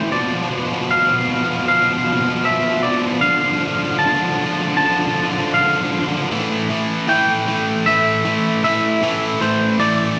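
Brooding yet cathartic, this short rock excerpt moves in a straight 4/4 feel and spends its first 6.3 seconds as a build-up. A distorted electric guitar sits up front with a bright, compressed, double-tracked riff picked in the low register. Over it, a clean, twangy electric guitar carries the melody, fingered with a scooped tone and thrown back by a slapback echo. The harmony moves from Bdim to Dm before landing on an A5 chord at 6.3 seconds, where a new section begins and runs to the close. A lush digital hall reverb with a long tail surrounds the pair, giving the recording a big arena sound.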